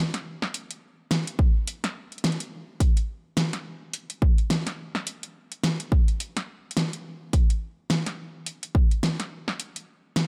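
A produced pop drum kit, up front with a fat snare and metallic hi-hats, carries the groove throughout this funky, playful glitch hop excerpt at 106 BPM in 4/4 with a 58% swing on the 16ths, joined from 1.4 to 8.9 seconds by a punchy, layered electronic kick that also sits up front, all under light reverb.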